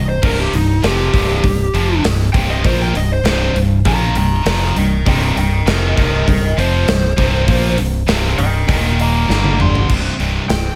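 Energetic and anthemic, this hard rock excerpt at 99 BPM in 4/4 features a dark, overdriven lead guitar through a small cranked amp soloing from 0.0 to 9.9 seconds over a backdrop of three bright high-gain distorted guitars playing riffs, one of them double-tracked. Up front sit a growly, punchy fingered electric bass and a gated 80s drum kit with a punchy kick, medium-tuned snare, bright cymbals and toms in a bright stone room, with a drum fill at 9.3 seconds. The chords move from C5 to Eb5 and G5 before returning to C5, all within a small room reverb.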